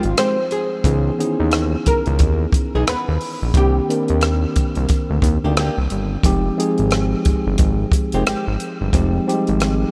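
A woody, plectrum-plucked oud with tape echo sings the melody over a worn, slightly out-of-tune tine electric piano, a fat, detuned analog bass with a fast filter pluck, and a dry cocktail drum kit with a punchy kick and rim clicks, all opening together on Fm9 at 89 BPM in a swung 4/4 groove, while a bright fingerpicked flamenco guitar with audible finger squeaks sits in the background from 0.2 seconds, and the oud drops out at 4.9 seconds, leaving the guitar, keys, bass and drums to carry this soulful, late-night neo-soul passage in F minor through Dbm9 and Cm9 in a small, lightly reverberant room.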